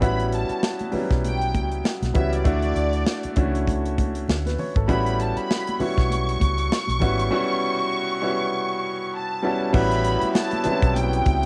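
A lightly reverberant home cassette recording carries this smooth, lush 1970s-style soul excerpt at 99 BPM with a swung sixteenth feel, where a bowed violin section sings the melody over a clear, intimate baby grand piano with audible action noise, a dark, foam-muted fingered electric bass, a tight, dry funk drum kit with bright cymbals, very quiet high-tuned congas, and a mellow, distant horn section that adds punchy stabs from 9.7 seconds over chords moving from A13 to Dmaj7 and back.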